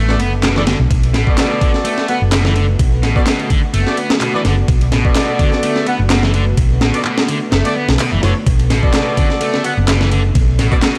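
Over a swung, gritty breakbeat of thumpy kick, high-tuned snare and ride, with faint electronic handclaps, this energetic, funky excerpt rides a round, up-front hollow-body bass, a bright, double-tracked distorted guitar riff with digital delay, tight mellow horn stabs and a lush, warbling detuned pad pumping in the background, all in a dark production with light reverb.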